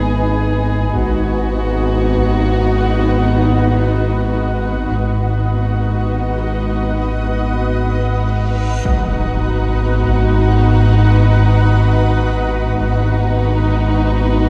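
Tense and ominous, this excerpt from a cinematic suspense score drifts in free time in G# minor, its chords moving from G#m to G#m7 at 1.0 seconds. A soft-attacked violin section carries a floating sul tasto melody between F#4 and G#4, while a woody, vibrato-laden viola section fills in the harmony beneath and a shimmering, detuned ambient pad with chorus and its own reverb holds ethereal sustained chords above. The low end rests on a deep, full sine sub bass drone on G#1, a distant cello section on G#2, and a very quiet double bass section doubling the sub's pitch. A heavy-sticked taiko ensemble, very quiet in a live room, rumbles briefly near the start and again around 8.9 seconds, where a huge, dark reverse cymbal rises into an impact that rings on in the background until 12.8 seconds. From 8.8 seconds an intimate second violin section with light vibrato adds a rich line on D#4. The whole is bathed in a wet concert hall reverb, giving a dark, warm production.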